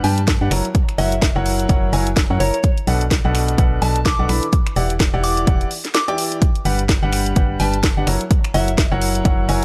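Euphoric, uplifting piano house at 127 BPM with a 16th-note swing, cut from a longer piece, where a clear, up-front grand piano riff and a hollow, organ-like FM bass both pump with sidechain over a punchy, overdriven electronic kick entering at 0.3 seconds and a house kit of cracking snare, bright hats and finger snaps, while a soft, pure synth bell melody with chorus and digital delay sits in the background through chords moving from Gmaj7 and F#7 to Bm7 and Em9, all in a dry mix with lossy compression artefacts.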